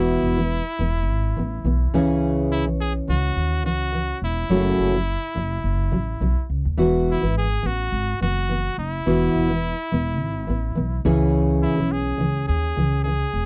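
A brilliant, punchy pop-style solo trumpet with vibrato and scooped notes carries the melody between E4 and G#4 from the first moment, over a full-bodied jumbo steel-string acoustic guitar fingerpicking through Esus2, C#m and F#m and a woody, thumpy pizzicato upright bass on gut strings, giving this carefree, easy-going pop excerpt in E major a 105 BPM pulse with swung 16ths and a dry, close 1970s-style studio sound.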